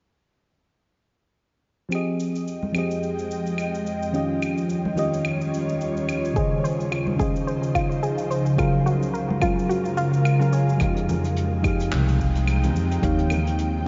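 Swung sixteenths at 108 BPM in 4/4 give this sunset chillout clip an easy, unhurried sway, and the mood is wistful and warm in F minor. From 1.9 seconds a mellow FM electric piano plays round, dark chords through chorus, phaser and delay, with a filter sweep running through the first section of its part, while a soft brush kit of cabasa, claves, handclaps and hi-hat ticks along quietly, joined by faint ringing congas and an ethereal, detuned pad that sustains airy chords. At 6.4 seconds a gentle pluck adds chorused arpeggios and a deep, tape-tinged electronic kick enters, dropping out briefly before the upright bass arrives at 10.8 seconds with woody, thumpy pizzicato on gut strings. The harmony drifts through Fm7, Eb7, Dbmaj7 and Gbmaj7 before returning to Fm7. A huge ambient reverb soaks the whole mix, leaving it dreamy and softened at the top.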